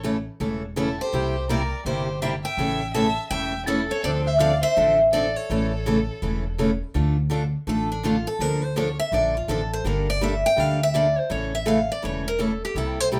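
A picked steel-string acoustic guitar with fresh, squeaky strings and a woody, thumpy pizzicato upright bass on gut strings open this swinging, bittersweet excerpt of acoustic string swing, joined at 0.8 s by a boxy, parlour-style picked lead guitar up front and a quieter, biting bowed violin with vibrato as a second line until 6.6 s, after which the bright lead guitar takes a solo from 6.9 s, all set in a wet studio reverb.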